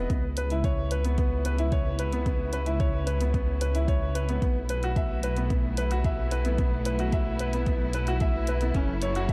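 Piano-and-strings electronica, intimate and moving in this short excerpt cut from a longer piece, where a bright, woody upright piano riff with tape echo sits up front over a detuned, rumbling sawtooth bass and a muted, veiled string section that fades in on lush bowed chords, both pumping with sidechain, while a deep layered electronic kick and an electronic hi-hat, re-recorded in a small room, keep a straight pulse through C#m7, B7sus4 and F#m7 in a dark production with light reverb.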